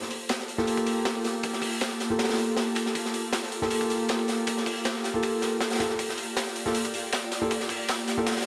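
A dark, mellow grand piano stands out in this atmospheric, nostalgic drum and bass and jungle excerpt. It enters at 0.6 seconds with up-front stabs roughened by vintage 12-bit sampler grit and trailed by dub echo, its action noise audible for an intimate feel. Beneath it, a crunchy breakbeat kit drives the straight groove with a punchy kick, a high-tuned snare and hi-hats, all saturated and high-pass filtered in a small room with a rolled-off top. A very quiet, compressed, sampler-style soul kit adds a dusty layer of hi-hat and a medium-tuned snare. In the background, an ethereal pad holds sustained chords, with detuned, warbling layers thickened by ensemble chorus and its own reverb. The whole passage works as a build-up, set in a moderate plate reverb.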